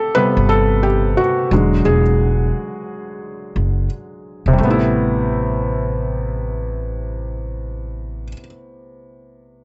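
Melancholic and hazy, this short lo-fi hip hop fragment, cut from a longer piece, moves with a swung sixteenth-note feel in four. A felt-muted upright piano opens on its own, soft and mellow, with audible action noise and short sustain that make it feel intimate and close. An acoustic upright bass joins at 0.4 seconds, plucked on gut strings, woody and thumpy, sitting up front alongside the piano. The piano carries a solo passage through 4.6 seconds, where the harmony returns from E7 to the opening Am7 as the music moves into a new section, and the bass drops out at 8.3 seconds. A moderate small-room reverb and a dark, warm production with the top end rolled off give the whole fragment a dusky, late-night haze.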